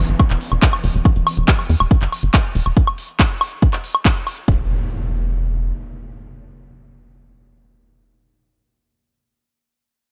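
This intense, hypnotic psychedelic trance excerpt at 140 BPM in E minor opens on a very quiet, mellow pulsing texture of detuned triangle chords under a filter sweep, alongside a downlifter and a tight, punchy sawtooth sequencer bass whose dark, ring-modulated pluck moves through its own filter sweep. A heavy, tape-warm electronic kick and a layered techno kit of handclaps, smooth hi-hats and woodblock join almost at once, sitting up front in a dry small room. At 4.5 seconds the drums stop, leaving the bass until 5.7 seconds while an electronic impact carries the final stretch.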